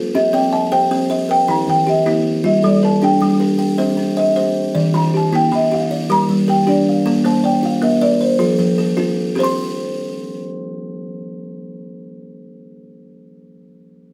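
Southern African traditional music in a hypnotic, rippling mbira-style interlocking cycle, this excerpt moves at 104 BPM in a straight 12/8, in C equiheptatonic tuning with A4 at 443 Hz. Two buzzing kalimbas play arpeggios throughout its 13.2 seconds: one is thumb-plucked, woody, ringing and close-miked, and the other is thumbnail-plucked, bright and short. Alongside them sits an up-front marimba melody on rosewood bars struck with medium mallets, which stops at 8.9 s, while the band plays live in one room with moderate studio reverb, cycling through Cm, Eb and Gm before reaching Bb and F and landing on a bare C5 at 9.4 s.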